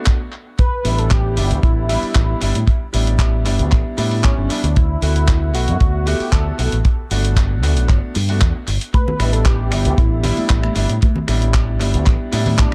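A straight 4/4 groove drives this groovy, sunny nu-disco passage, cut from a longer piece, with a tight, dry kick up front beneath a gritty, compressed sampler-style kit of finger snaps, handclaps and hi-hat, while a bright, direct fingered electric bass with an envelope filter carries the low end. A brilliant, vintage grand piano with long sustain lays chords, opening on a rootless Gmaj9, under sidechain pumping and tape echo, and from 0.6 seconds a thick, nasal, detuned unison lead sings the melody with vibrato through cassette tape grit and dub echo. Ringing congas join in the background at 8.9 seconds, all set in an echo-heavy mix soaked in studio reverb.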